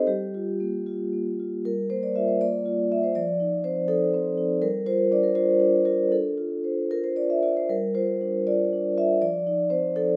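A solo vibraphone struck with soft mallets opens this reflective, hypnotic excerpt from a contemporary classical piece in G minor, moving in a rubato 6/8 at roughly 74-84 BPM as its mellow, ringing, up-front metallic tone and slow motor vibrato drift through chords such as Gm7, F7, G7sus4 and Dm7, captured closely and in fine detail within a moderate, large studio reverb.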